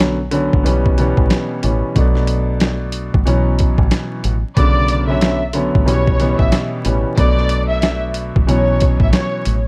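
Reflective and moody, this boom-bap hip-hop excerpt swings over a compressed, pitched-down sampler drum kit with a thumpy kick and medium-tuned snare, while a dark, foam-muted fingered electric bass adds round, punchy lows and a woody upright piano with long sustain sits up front, its tone filtered and tinted by cassette tape. At 4.6 seconds a lush bowed violin section enters with smooth vibrato, filtered and trailed by tape echo, carrying the melody high above the chords. The whole excerpt has a dry, gritty small-room sound dusted with vinyl crackle.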